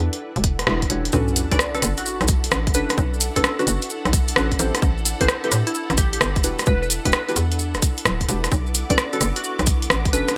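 A swung two-step garage groove at 130 BPM in 4/4 drives this bouncy, late-night cut in B minor, built on a tight, tape-warm electronic kick and a punchy analog drum machine whose hi-hat and rim clicks sit up front with a gated-reverb snap. A hollow, knocking FM bass bounces beneath with fast, decaying notes. Over an ethereal, airy pad that pumps behind the beat with ensemble chorus, a deep, nasal chord stab with chorus and delay moves through Em9, Bm9 and Am9 harmonies. At 1.1 seconds the track drops, bringing in a sub drop that rumbles in the background until 3.0 seconds, close, grainy maracas that add dry acoustic shuffle, and a distant, lush violin section holding sustained, pumping chords with vibrato. From 1.5 seconds a glassy, crystalline wavetable pluck carries the melody, warbling with detuned unison, 12-bit sampler grit and echoing delay. The bright 1980s-style digital production sits in a light ambience, giving the fragment a polished, nocturnal shine.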